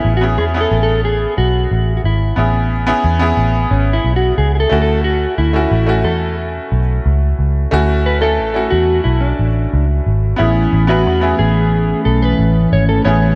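A bright, woody upright piano, slightly detuned and worn, opens this dreamy, nostalgic indie pop passage alongside a mellow electric guitar and a round, foam-muted picked bass that sits up front. The guitar carries a clean, fingered solo from start to finish, its dark tone shimmering through a lush chorus and vibrato effect. Beneath it, the vintage bass gives an amped, dusky low end at a steady, unhurried pace in a straight four. The harmony moves from Amaj7 to Dmaj9 at 4.7 seconds and back to Amaj7 at 10.4 seconds, where a hollow, soft pad enters with flute-like, slowly blooming sustained chords thickened by its own chorus. A lush hall reverb soaks the whole mix in a hazy, nostalgic glow, and the passage is cut from a longer piece.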